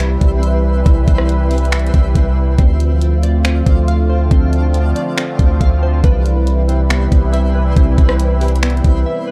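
Hazy and spacious, this short cut from a longer atmospheric cloud-rap track rides a half-time hip hop feel in 4/4, with a dark production and little reverb. A smooth, electronic R&B kit sits up front with a knocking kick, warm hats, finger snaps and rim clicks, alongside a deep, mellow 808-style bass whose long sine notes decay low in the register. Behind them, a sweeping, resonant pad of detuned vintage sawtooth voices warbles through chorus and filter swells, holding sustained chords that move from Cmaj7 to Dm7 and back. A faint, twinkling granular texture adds octave-up FM shimmer bathed in its own reverb. At 2.6 seconds, glassy digital keys enter with bright arpeggios colored by chorus, phaser, tape echo and a filter sweep, and a break arrives at 9.1 seconds.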